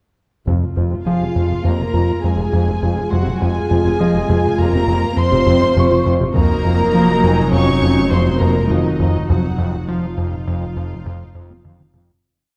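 A gritty, saturated synth bass pulses up front through this ominous, eerie suspense cue in 5/4 at 102 BPM, joined by a dark viola ostinato and a pure, floating double bass drone, while soft sul tasto violins carry the melody with the second violins and woody cellos doubling it at the octave, sparse ringing Celtic harp notes sit in the background, very quiet single timpani strokes open the piece, and a very quiet taiko ostinato returns at 6.3 seconds before the whole piece fades from 9.3 seconds into a closing drum fill under a dark scoring-stage reverb.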